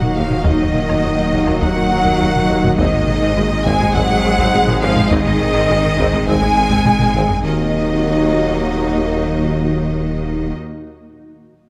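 A vast, futuristic hybrid orchestral and electronic film cue opens with a lush violin melody over a dark, woody chamber violin line, expressive viola with portamento, a rich cello section, soft-attack double basses, a clean sine sub bass, a cloudy granular pad, very quiet mellow French horns and trombones, a distant tuba entering at 0.2 seconds, and a harp-like, chorused synth pluck arpeggiating beside hard-stick taiko drums, whose fill at 6.9 seconds marks a new section as the pluck drops away and the taiko stops at 7.6 seconds, the strings and brass sitting in a wet scoring-stage reverb.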